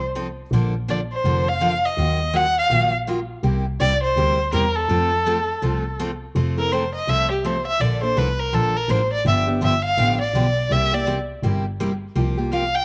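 Acoustic string swing in the jazz manouche style at a lively 165 BPM: a woody, bowed double bass with soft attack and a bright, full-bodied picked steel-string guitar with audible finger squeak support an up-front violin whose smooth-topped, expressive bowing with vibrato and portamento carries the melody and takes a solo from 6.3 s as the harmony settles into F major, all heard in this short cut from a longer piece through moderate spring reverb and small room ambience.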